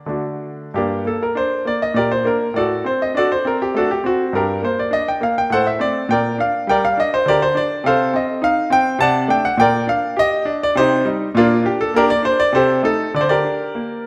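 In a triple metre handled with flexible rubato, this grave, introspective baroque-style suite movement unfolds as a brief passage cut from a longer classical piece. A grand piano carries the music alone from 0.0 to 14.1 seconds, spanning G2 to A5 with a brilliant, polished tone that sits up front, its notes speaking with a short sustain. The harmony moves through a dark minor-key progression in which inverted chords, dominant sevenths and half-diminished colours give the line a searching, sombre weight before it settles on a second-inversion tonic near the close. A moderate recital hall reverb surrounds the instrument, lending its bright tone a gentle halo of space. The result is a serious, reflective miniature that feels both intimate and formally poised.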